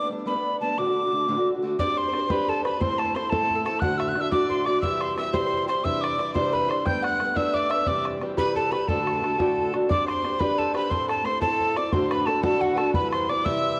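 Celtic folk jig in 6/8 at 118 BPM, lively and cheerful, where a breathy metal whistle with a chiffy, crisp attack and a boxy fingerpicked parlour guitar sit up front from the start, joined at 1.8 seconds by a biting, intense bowed fiddle, a woody double-string mandolin in the background and a damped, tight bodhran, all bathed in a 2.0-second scoring-stage reverb and the warbling pitch drift of worn cassette tape, cut from a longer piece.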